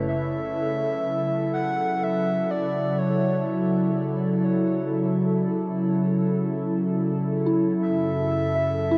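Ambient piece in F# minor at a slow 62 BPM in 4/4, spacious and reflective in mood, heard as a short cut from a longer work. A warbly, tape-like pad sits up front with detuned, nostalgic sustained chords, its slow attack and long release softened by chorus and its own reverb. Behind it, a soft FM synth bell plays gentle, pure arpeggios that decay through chorus, phaser and tape echo. From 0.1 seconds a breathy, flute-like synth lead carries the melody up front in a high register, its vibrato and airy noise layer colored by chorus and tape echo. The harmony rests on F#m7 before shifting to A/F# at 7.8 seconds. A huge, wet ambient reverb with a 9.3-second tail wraps the whole in a dark, warm production.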